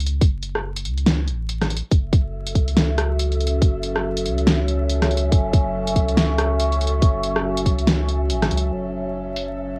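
Deep dubstep at 141 BPM in F# minor, brooding and meditative, with a swung half-time feel resting on a single F# minor chord in this short cut from a longer piece. A soft, round dub sub bass and a tight, up-front electronic kick anchor the low end, while a deep house kit of hi-hat, rim click and fat, filtered snare adds tape-softened grit from a small room. From about 2.4 seconds a resonant, ring-modulated drone with moving overtones and an airy, wind-like noise texture drift in under light reverb and vinyl crackle on a cassette home recording.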